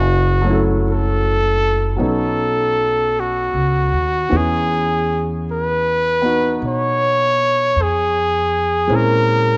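Over a slow, swung 4/4 pulse, this melancholic, intimate jazz ballad fragment puts a bright, close-miked trumpet up front, its forceful, punchy solo melody marked by scooped notes and light vibrato. A woody, growly pizzicato upright bass sounds from the start, and a smooth, vintage-toned grand piano joins at 0.4 seconds with accompaniment as the harmony moves from F#m7 through B9 to E69, touching A#m7b5 at 8.9 seconds. Light reverb gives the whole a soft sense of room.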